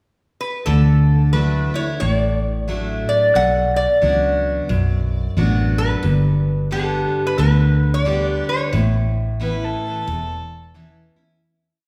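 Nostalgic and down-home, this short honky-tonk and classic country piece in D major swings at 89 BPM, with a nasal, metallic lap resonator guitar playing a slide melody of song-like motifs over a bright, jumbo-bodied steel-string acoustic guitar's alternating bass and strum, complete with finger squeak, and a round, punchy foam-muted electric bass walking up through two-beat root-and-fifth lines, while a woody, distant fiddle slips in at 9.4 seconds with light-vibrato blues licks as the whole thing rings in a churchlike hall and fades out from 8.7 seconds.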